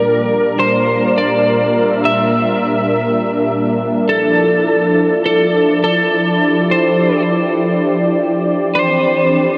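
A lightly driven electric lead guitar carries the melody, its dark, slightly broken-up picked tone held compressed and up front, colored by analog chorus and a diffuse ambient delay. Beneath it, an analog pad of detuned sawtooth voices sustains chords with a soft attack, its smooth, warm body also treated with chorus and placed up front. Both parts play together for the full 9.6 seconds of this cut from a longer synthwave piece in straight 4/4. The harmony moves from Gm/Bb to Dmadd9 at 4.1 seconds, then to Cadd9 at 8.8 seconds. A huge ambient reverb with a 7.5-second tail soaks the whole dreamy mix, giving it a nocturnal, nostalgic mood.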